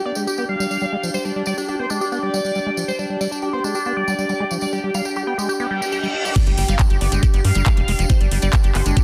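A driving, psychedelic trance passage at 138 BPM opens on a breathy, chorused pad with sidechain pumping, joined almost at once by a screaming, guitar-like overdriven lead carrying the melody through phaser and delay, a squelchy, resonant acid bass riff with tape echo, and a jingly tambourine, before a reverse cymbal rises in the background at 5.7 seconds and an impact lands on the drop at 6.4 seconds, where a knocking, up-front electronic kick, a garage drum kit with metallic hi-hats, crash cymbal and handclaps, and a tight, punchy sawtooth sequencer bass with a plucky filter surge in under light reverb and a dense, heavily limited master.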